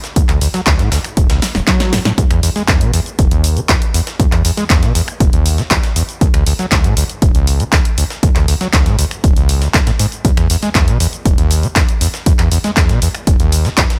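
A straight 4/4 pulse at 119 BPM drives this trippy, playful acid house excerpt in E mixolydian, anchored by an up-front electronic kick that is dry and punchy. Around it, a dry analog drum machine supplies a punchy snare, hi-hat, handclaps, finger snaps and cabasa, while a very quiet sampler-style breakbeat kit sits underneath with a compressed, pitched-up, high-tuned snare and hi-hat, gritty and tape-warm. The overdriven acid bass carries the riff from D1 to G#3, squelchy and resonant with a sawtooth edge, its plucked, fast-attack notes decaying through distortion, tube saturation, analog chorus and digital delay. The opening 2.2 seconds bring a filter sweep on the bass and a drum fill from 1.4 seconds, leading into a drop at 2.2 seconds that runs to the end. A digital ambience surrounds the mix.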